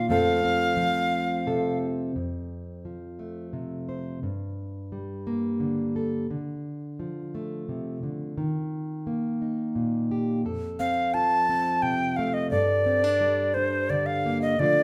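An airy, wooden alto recorder with vibrato and a tongued chiff sits up front in this nostalgic, pastoral acoustic folk piece in 3/4 at 87 BPM in F mixolydian. It voices the melody briefly at the start and returns at 10.8 seconds for a solo that closes this short section cut from a longer piece. Throughout, a dark, full-bodied, fingerpicked jumbo steel-string guitar plays an accompaniment through F, Gmadd9, Dm and Eb, with both players heard live together in a large studio with lush reverb.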